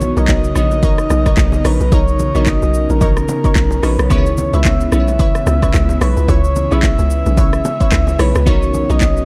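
A hollow, bouncy log drum bass sits up front with a deep-kicked afro-pop drum kit of crisp hats, handclaps, rim click and shaker, driving this late-night, soulful amapiano excerpt at 110 BPM with a swung sixteenth feel in C# dorian. A breathy, flute-like synth lead with vibrato carries the melody over glassy, detuned digital keys, a soft airy pad and bright hand-played bongos and congas in the background, while a round analog pluck adds delayed, chorused stabs from 0.2 to 9.0 seconds. The chords move from Bmaj9 to C#m7 and back, in a dark, dry production.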